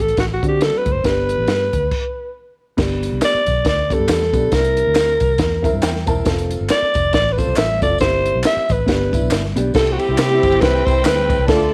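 A swung, uptempo 4/4 groove in 1960s-style soul drives this joyful, danceable passage cut from a longer piece. A compact cocktail drum kit sits up front, dry and acoustic, with a punchy kick, a high-tuned snare and dark cymbals. Beneath it, a foam-muted, round electric bass runs through transformer saturation, while very quiet congas ring softly under gentle hands. A raspy, gritty alto saxophone carries the melody up front with vibrato, and a woody, boxy upright piano with audible action noise adds accompaniment and a brief fill. After a stop at 1.9 seconds, tambourine and group handclaps enter at 2.8 seconds, and a bowed studio string section with light vibrato and a soft, sul tasto attack joins at 9.8 seconds, all set in a small room with light reverb.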